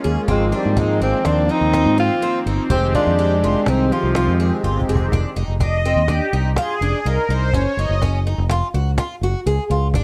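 Driving and brooding, this progressive instrumental passage moves at 124 BPM in a straight 5/4 in F dorian, and it is cut from a longer piece. A breathy, mellow tenor saxophone carries the melody up front with light vibrato and scooped notes, while a vintage trombone sits in the background with a second line; both drop out at 4.6 s. Underneath, a swirling, detuned sawtooth pad with phaser and chorus evolves over soft attacks, and a bright, octave-doubled twelve-string acoustic guitar shimmers through picked arpeggios with an analog delay and the odd finger squeak. A direct, warm fingered electric bass drives from up front, while a woody cajon played with soft hands, its snares faint, stays in the background. After a drum fill, the pad takes the lead from 5.1 s until it ends at 8.0 s, over harmony that passes from Ab69 and Fm7 to Gb5. A moderate studio reverb gives the whole band a compact sense of space.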